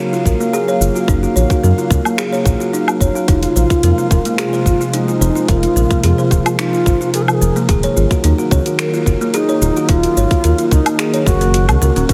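Heavily compressed into a radio-like sound with light digital ambience, this meditative, mystical organic downtempo excerpt at 109 BPM in Eb dorian features a warbling, detuned tape-like pad sustaining chorused, sidechain-pumped chords, a buzzing, woody kalimba ringing out arpeggios through tape echo, an afro-pop drum kit of finger snaps, metallic hi-hat, shaker and woodblock, a deep, round analog bass with tube saturation sitting up front beside a tight electronic kick, and a breathy bamboo bass bansuri with vibrato that enters at 3.3 seconds to carry the melody, while the kick drops out at 11.5 seconds.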